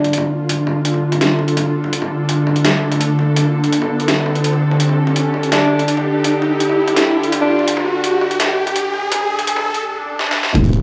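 A tense, string-like sawtooth drone in D minor opens this heavy, cinematic half-time drum and bass excerpt at 167 BPM, its bright chords pumping beneath built-in reverb, while a gritty, compressed sampler-style kit of hi-hat, snare and toms sits up front and a mellow alto saxophone with vibrato offers brief solo phrases through tape echo and a low-pass filter. The passage is one long build-up: filter sweeps run through it, one on the saxophone, an electronic riser enters at 1.9 s and gives way to a swell, and a drum fill leads to an impact at 10.6 s. At that moment a deep, decaying sine 808-style bass and a very quiet, thumpy electronic kick arrive, captured in a dry hardware recording with light reverb and small room ambience.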